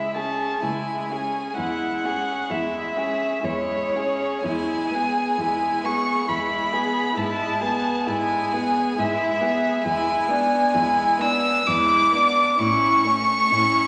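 A rich, up-front first violin carries the yearning melody with light vibrato and a soft, airy sul tasto bow, over a dark second violin line with a smooth top, an intimate viola accompaniment and a woody cello bass, in this melancholic excerpt of a slow romantic string quartet movement in 3/4 at 58-69 BPM with rubato, moving from C#m to A in a wet scoring-stage reverb.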